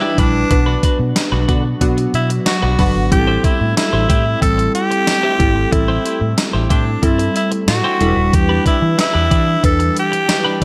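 Uplifting and nostalgic, this 1980s-style pop excerpt moves at 92 BPM in a straight 4/4, with a raspy, gritty tenor saxophone carrying the melody up front, its scooped notes and light vibrato trailed by digital delay over glassy digital keys, a clean picked twelve-string electric guitar riff and a very quiet, ethereal FM pad. From 0.2 seconds a foam-muted, round fingered bass and a thumpy, sampler-style drum machine with gated reverb snare, tambourine and hi-hat drive the groove, while a nasal, detuned polysynth adds funky phased stabs between 1.5 and 3.1 seconds during a band accent. The chords cycle through Em7, Bm and Am7 before returning to Em7, all set in a light reverb.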